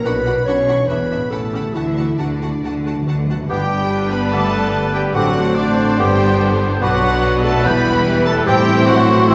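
A close, expressive studio violin section carries the melody with rich vibrato through this cheerful, spirited orchestral excerpt, supported by a dark, distant clarinet, mellow French horn chords, ringing thumb-plucked harp arpeggios, and a lush symphonic string body of clear second violins, very quiet violas and cellos, and bowed double basses. Hard-mallet timpani play a fill from 1.8 to 3.5 seconds, and at 3.5 seconds the music moves to a new section where a mellow oboe, a pure, soft-attack flute group, a clear bassoon, faint trombones and brilliant trumpet stabs join. The whole ensemble sits in a wet scoring-stage reverb, recorded in a church or concert hall.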